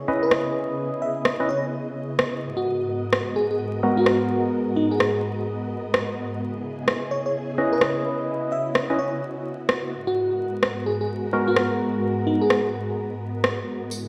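Soulful and skippy, this short cut from a longer piece is a two-step UK garage groove with a heavy 16th-note swing. A soft string machine holds silky, vintage sustained chords through the whole passage, slow to bloom and long to fade under an ensemble chorus, as the harmony moves between C#m9 and G#m9. Up front, a hollow, dark organ stab punches out short chords with analog chorus, cassette tape colour and tape echo, while a sparkling, bell-like FM electric piano carries the melody through the same chorus, tape and echo treatment. An overdriven electronic rim click drives the drums from 0.3 seconds, and a jingly, close tambourine appears only at 13.9 seconds. The mix is bathed in a lush hall reverb and the stony echo of a bare room, as if played on a big sound system, with vinyl crackle throughout.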